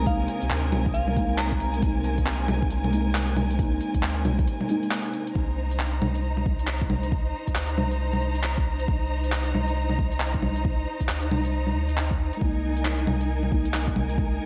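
Rainy and ghostly, this future garage passage in C minor moves at 136 BPM in 4/4 with a swung sixteenth-note feel. A soft, pure FM bell sits in the background with a brief chorused, dub-echoed melody that ends at 1.8 seconds, while muted, felt-like synth keys play intimate chords through chorus and dub echo, drop out at 5.4 seconds after a short break, and return at 12.4. Beneath them, a lush, bowed string section holds dark symphonic chords with expressive vibrato, and a round sine sub bass with tube saturation anchors the low end, both pumping against the sidechain. An electronic kick with a deep, tape-warmed tone and an up-front garage kit of crisp hi-hats, handclaps and bongos drive the groove, both re-recorded in a large room. A very quiet, grainy, flickering texture hovers throughout, and vinyl crackle with light reverb and digital ambience colors this fragment of a longer piece.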